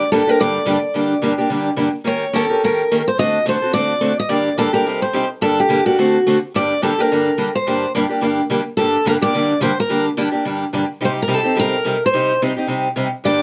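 A brisk swing at 214 BPM in 4/4 drives this short jazz excerpt in G minor, its eighth notes given a light lilt. Two picked steel-string acoustic guitars play throughout the 13.4 seconds, one carrying the melody between F#4 and Eb5 with a warm auditorium-body tone, the other supplying accompaniment from G2 to Bb4 with a bright, boxy parlour character. Both sit up front, and finger squeaks come through on each, adding a close, tactile edge to the virtuosic, swinging mood. The harmony moves from Gm through Eb7 and D7b9, touches Cm and D7, then returns to Gm at 6.5 seconds to begin the phrase again, with Cm arriving at 11.0 seconds. A moderate studio ambience with a short reverb tail frames the duo in an intimate room sound.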